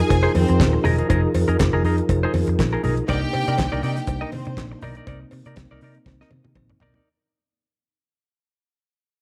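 A swung sixteenth-note groove at 121 BPM in 4/4 drives this short disco cut in C minor, moving from Fm7 to Cm9 at 3.1 seconds with a driving, danceable mood. A damped 70s drum kit with a fat snare, tight kick, hi-hat, toms and handclaps anchors the beat, while a foam-muted fingered electric bass sits up front with a dark, round tone. Very quiet congas with a thick, low-tuned skin and a close, dry cowbell add percussion underneath. A clean, compressed semi-hollow guitar plays accompaniment, and a mellow, flute-like tonewheel organ holds sustained chords through chorus vibrato and a fast rotary speaker, its key click audible. A lush, bowed symphonic string section carries a second line until 4.8 seconds, and the whole passage fades out in a small, lightly reverberant room as a drum fill arrives at 6.1 seconds.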